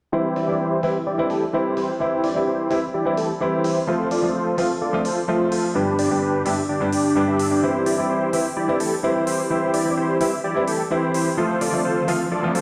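Festival progressive house in C major, this euphoric, uplifting excerpt moves at 128 BPM in a straight 4/4, tuned slightly sharp to A4 = 441 Hz. A huge, thick supersaw riff sits up front from the first moment, its detuned unison sawtooth layers carrying a sub octave, a fast attack, sustained notes and vibrato, all dense and compressed, then shaded by a low-pass filter and dub echo. Alongside it, a warm baby grand piano plays present, up-front accompaniment in a lower register, roughened by vintage 12-bit sampler grit and trailed by its own dub echo. Crisp, layered electronic hi-hats arrive at 0.4 seconds with a tape-warm, filtered edge and studio reverb, while the harmony moves from C to F, G, back to C and then F. At 11.7 seconds an electronic riser builds in the background toward the cut at 12.6 seconds. The whole mix blooms in a lush hall reverb and sounds as if played over a big sound system in a bare, reverberant room.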